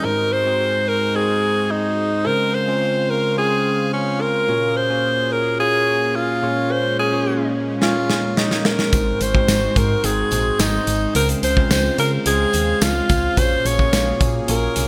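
This is a romantic, glossy slice of 1980s-style pop at 108 BPM in Db major, cut from a longer piece and moving through lush seventh chords such as Ab7, Dbmaj7 and Gbmaj7/Bb. A close-miked alto saxophone carries the melody up front from the start, its warm tone marked by light vibrato and scooped notes. Beneath it a bell-like tine electric piano plays clean accompaniment with subtle chorus, while a swirling, detuned analog pad sustains chords in the background through phaser and chorus. A drum fill at 7.8 seconds brings in a modern studio kit with a punchy kick, medium-tuned snare and gated reverb, and at 8.9 seconds a round, dark FM bass arrives alongside a jingly, distant tambourine. The bright digital production sits in a moderate plate reverb.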